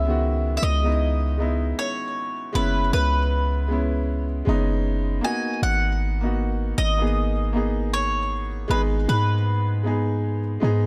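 Set in an intimate small room, this short cut from a longer contemporary R&B piece in G# minor moves at a relaxed 78 BPM with a swung sixteenth-note feel and a longing, late-night mood. A woody, double-strung mandolin carries the melody through a digital delay. A clear baby grand piano, its action noise audible, plays the accompaniment over a deep, boomy 808-style bass, all three parts up front as the chords pass from C#m7 to F#7sus4 and settle on G#m7 at 5.2 seconds.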